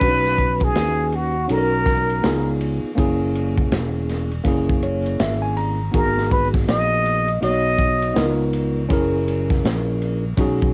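A breathy, plunger-muted trumpet sings a whispered, mellow jazz melody from the start over a worn, slightly out-of-tune tine electric piano with light overdrive, a round fretless electric bass and a crunchy, gritty breakbeat kit with dark cymbals and a punchy kick, setting a smooth hip hop groove at 81 BPM with a swung feel in B major, the piano adding a fill at 4.5 seconds and the trumpet dropping out at 8.5 seconds in this warm, cassette-toned home recording cut from a longer piece.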